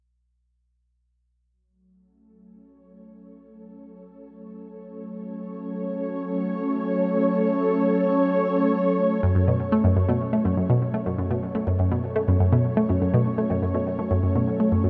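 Hypnotic and mysterious, this ambient space-music excerpt moves at 123 BPM in a straight 4/4, settled on an F# minor chord. A lush unison pad fades in from 1.4 seconds, holding sustained chords with a thick, warbling, detuned sawtooth tone that blooms slowly and lingers on a long release, its vintage character deepened by chorus. At 9.2 seconds an analog pluck enters with a low riff, its round, nasal sawtooth voice carrying a noise layer, a fast attack and a short filtered decay. The pluck sits bright and up front, colored by chorus, phaser, tape echo and a gritty 12-bit sampler texture. Both parts are soaked in a huge ambient reverb with a 7.2-second tail, giving the mix a dreamy quality until the cut at 14.9 seconds.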